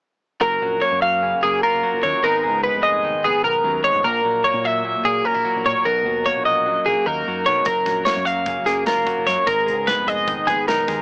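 In a straight 9/8 at 298 BPM counted in eighths, this wistful, bright math rock and midwest emo fragment in F# major sets an up-front, twangy twelve-string electric guitar picking chords beside a second clean, compressed twelve-string guitar picking higher arpeggios, over a warm fingered electric bass, moving through F#maj7, G#madd9, F#7/A# and Bmaj7 until an airy, polished acoustic drum kit of hi-hat, punchy kick and medium-tuned snare, coloured by cassette tape, enters at 7.7 seconds, the whole piece captured dry as a home cassette recording with a small speaker sound.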